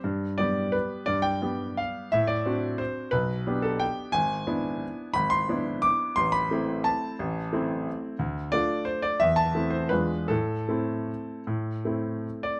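Sparkling and elegant, this short classical piano waltz moves in 3/4 with a rubato feel, its tempo flexing between 150 and 188 BPM. A solo grand piano carries the whole passage from 0.0 to 12.6 s, spanning G#1 up to D6 with a clear, smooth, slightly vintage character and a short sustain. The harmony opens on G and passes through D7/A and G/B before settling into A minor at 4.1 s via E7/G#, then moves through Am, Dm and Am/E to an E7b9 that resolves to Am at 10.3 s. Close, detailed microphones place the instrument up front, and a light reverb gives it a touch of space, with the tuning set to A4 = 439 Hz. The fragment is cut from a longer piece.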